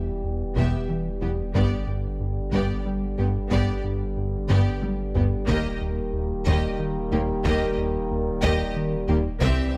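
Tense and futuristic, this short excerpt from a hybrid orchestral and electronic film score moves at a slow 61 BPM in a straight 6/8, shifting from E minor to G and then D#. From the first moment a dark, distant French horn section and a clear, present trombone section hold sustained chords over a rubbery, hollow square-wave bass riff and a deep, clean sine sub bass. At 0.6 seconds the lush symphonic strings enter: a violin section carries a focused melody with vibrato, a second, more distant violin line and a close viola section fill in the middle, and cellos and very quiet double basses deepen the low end. A very quiet, soft, round pluck with chorus plays arpeggios, while a close, dry taiko ensemble struck with hard sticks drives the pulse and plays a fill from 4.5 to 5.5 seconds. A barely audible electronic riser appears at 9.4 seconds, and the whole is captured with close, detailed microphones and light reverb.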